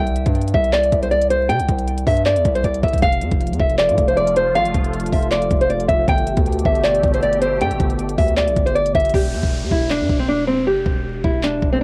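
Driving a half-time 157 BPM trap groove, this brooding, dark hip hop excerpt in E phrygian sets a bright, fingerpicked nylon-string guitar melody up front, softened by a low-pass filter, cassette tape and tape echo, over a punchy, heavy 808-style bass and a crisp, knocking trap kit of kick, hi-hat and handclaps, while a detuned, sawtooth-edged resonant pad with chorus enters at 3.0 seconds, and at 9.1 seconds the hi-hats drop out as a downlifter falls beneath the vinyl crackle and lossy compression artefacts of a home cassette recording.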